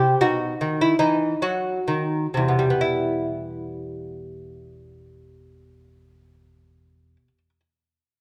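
Grave and flowing, this short cut from a longer baroque-style classical dance in E minor sets a solo lute, bright and delicate with fingerpicked gut double strings and some octave-doubled courses, up front in a moderate recital-hall reverb over a faint mains hum, moving in a rubato 12/8 at 41-52 BPM, slowing over its opening 2.8 seconds on a B chord before settling onto E minor as a new section begins, and the lute falls silent at 7.6 seconds.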